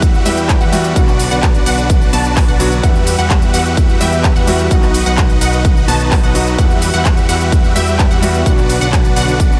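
A punchy, up-front electronic kick, layered and tape-warm with a large-room sheen, drives this anthemic festival progressive house excerpt at 128 BPM in E minor, joined by a pop drum kit of crisp hats, handclaps, ride and shaker, and a fat, saturated analog bass with a detuned, wave-folded bite and a filter sweep. Huge, bright detuned supersaw chords carry the riff over a background pluck playing arpeggios, all of them pumping with sidechain and trailed by digital delay, while a deep-toned concert grand piano adds accompaniment roughened by vintage 12-bit sampler grit. Far back in the mix a very quiet, warbling vintage pad holds chorused chords through a powerful progression that moves between Emadd9, Bm and B.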